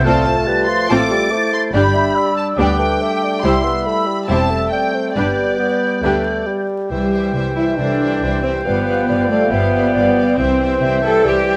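This classical excerpt is a fast, dramatic romantic orchestral movement in C major at 139 BPM, with an urgent, stormy mood. A lush, focused violin section carries the melody over a mellow, airy flute group, a soft-attack clarinet and a second violin section in the background, while violas and a bassoon fill the accompaniment and a rich, vibrato-laden cello section and double bass section anchor the bass. A tight French horn section holds sustained chords from 0.1 s, a vintage-toned solo oboe joins at 6.9 s, and the whole is heard through close, detailed microphones in a moderate scoring-stage reverb with vinyl crackle.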